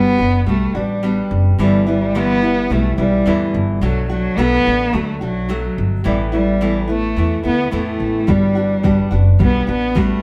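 A bowed cello with vibrato and a smooth, focused top sings a heartfelt, sunny melody in G major over bright, fingerpicked nylon-string guitar and a woody, growly pizzicato upright bass, all three up front in this acoustic pop excerpt at 107 BPM with a light sixteenth-note swing, moving through Gmaj7, Em7/G, Bm7 and Asus2 in moderate studio reverb like a band playing live in one room, until a soft, tape-warm electronic kick drum joins at 8.3 seconds.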